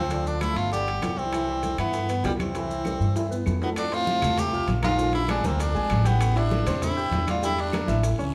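An edgy, forceful tenor saxophone leads this sophisticated, danceable Afro-Cuban jazz excerpt up front with vibrato and scooped notes, while a breathy, smooth-topped baritone saxophone carries a second line in the background. A growly pizzicato upright bass sits up front beside a natural-sounding concert grand piano with deep lows, and congas, ringing metal-shelled timbales, grainy maracas, very quiet tight bongos and woody claves fill out the percussion. After a fill from 2.9 s, a raspy guiro joins at 3.8 s as the harmony shifts, all within a wet, live-in-the-room studio reverb.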